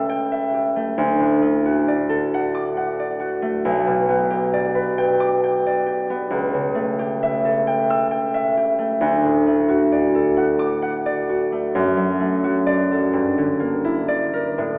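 Heard from further back in a vast, cathedral-like space, the recording carries an AM radio quality, with a long, wet reverb hanging behind every note. This is a classical piece for solo concert harp, cut from a longer work, with a dreamy, graceful mood and a slow, rubato lilt in 6/8. The harp is the only instrument, sitting up front with a bright, ringing, thumb-plucked tone and spanning from B1 to E6. Its harmony drifts from A7/C# to D, then through G/B and back to A7/C# before returning to D around 9.0 seconds. The passage moves on to D/F# and closes at 13.1 seconds on an Em7b5/G chord.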